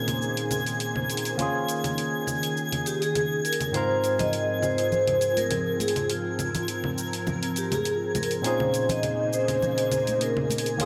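A lightly swung groove of electronic hi-hat, congas and cabasa with warm, tape-warm hats drives this smooth sunset chillout excerpt, with a second set of bright, close, hard-handed congas sitting in the background from 4.2 seconds. A barky, lightly overdriven tine electric piano with delay and a silky, phased string machine with slow attack carry the chords from Bbm11 through Eb7sus4 to Ab6, while a twinkling granular texture glints high above. At 2.9 seconds a ringing vibraphone with fast motor vibrato and delay takes the melody up front, all wrapped in a lush hall reverb and glossy 1980s-style digital sheen.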